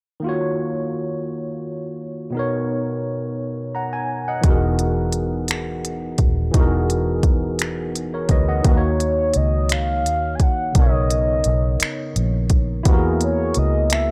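A barky, bright tine electric piano opens this slow six-eight R&B excerpt at 57 BPM, its analog chorus shimmering over Ebm9, Bmaj9 and Emaj9#11 chords in a late-night, yearning Eb phrygian mood. At 4.4 seconds a dark, foam-muted fingered bass with tube saturation joins an up-front, electronic drum kit of finger snaps, smooth hi-hat and a soft kick. At 9.0 seconds a mellow, horn-like synth lead with a soft attack, vibrato and a filter sweep carries the melody, all set in digital ambience with a dry, gritty hardware sound.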